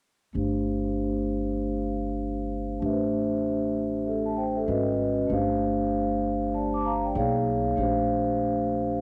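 A small room's air and light reverb surround this home cassette recording, a smoky, cool hip hop passage cut from a longer piece and swung on the sixteenths. Up front, a mellow vibraphone played with soft mallets and its motor off rings with a metallic tone through a low-pass filter, tape coloring and a filter sweep from 0.4 seconds, moving through chords from Gsus2 and Am7 to Abm7, Bmaj7 and Bbmaj7. Beneath it, a much quieter upright bass adds dark, woody, thumpy pizzicato notes from its gut strings, both parts playing from 0.3 to 9.0 seconds.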